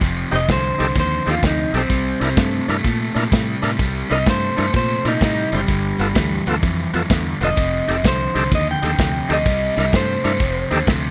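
A dark, slightly broken-up electric guitar through a small old amp carries the melody from 0.4 seconds, its fingered line sounding compressed and lo-fi. This gritty, soulful electric blues shuffle moves at 127 BPM in 4/4 with a swung feel, cycling through F7, C7 and G7. A crunchy, picked overdriven guitar riff sits up front beside a round, foam-muted fingered bass. An acoustic soul drum kit, with a punchy kick, medium-tuned snare, dark ride cymbal and rolled-off top, drives the groove. A thick, overdriven tonewheel organ with key click and a slow rotary speaker adds accompaniment. The mix is dry and close, and the recording is cut from a longer piece.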